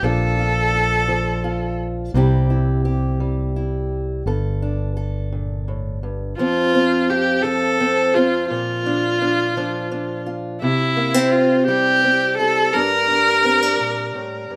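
A bright, focused bowed viola with vibrato carries the melody of this nostalgic, pastoral acoustic folk excerpt in straight 6/8, sounding briefly at the start and again from 6.4 seconds, over a woody fingerpicked archtop guitar with old strings that plays throughout, while a round, up-front fingered electric bass holds the low end until 6.3 seconds, under light reverb.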